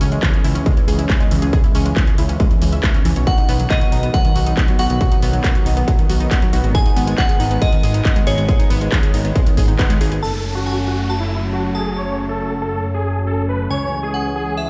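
A distorted, up-front electronic kick drives this bittersweet uplifting trance cut beneath a pumping lush supersaw pad, a fat detuned analog bass, gritty chorused analog pluck arpeggios, tape-toned handclaps and hi-hat, and a crystalline FM bell line from 3.3 seconds, before the beat drops out near 10.2 seconds as a huge euphoric supersaw lead takes the melody over a soft downlifter, all heard in a stone room's reverb.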